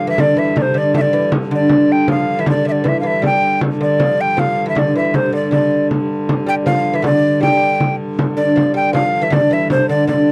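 A dry, close recording in a 1970s studio style, touched with light reverb, holds this brief cut from a longer medieval dance in 3/4 with a straight feel. Up front, a breathy, mellow tenor recorder of wood carries the melody between C5 and G5 with a soft attack and a straight tone. Beneath it, a delicate, fingerpicked lute on gut double strings, some doubled at the octave, plays a second line in its low register, while a clear hurdy-gurdy, wheel-bowed and keyed by one player, sustains an earthy drone with an airy bow. A small, bright frame drum, played with soft hands and heard in a small room, joins at 0.2 s. The opening passage returns at 8.2 s and carries the mysterious, ancient mood through to the cut at 10.3 s.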